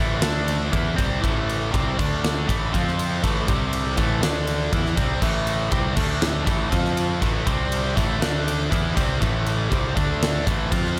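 Aggressive and driving, this hard rock passage is cut from a longer piece and moves in a straight, steady four-beat metre. A high-gain distorted guitar, bright, picked and double-tracked, sits up front with a riff that ranges from A2 to F4, carrying a slapback echo. Beneath it, a growling picked electric bass with overdrive gives a punchy low end, sounding both direct and amped. A huge arena drum kit joins at 0.2 s, with a fat snare, a punchy kick and bright crash and ride cymbals, its acoustic sound placed up front in a big room. The riff cycles through power chords on A, D, F and C with recurring A minor chords, repeating the same pattern roughly every four seconds under a light studio reverb.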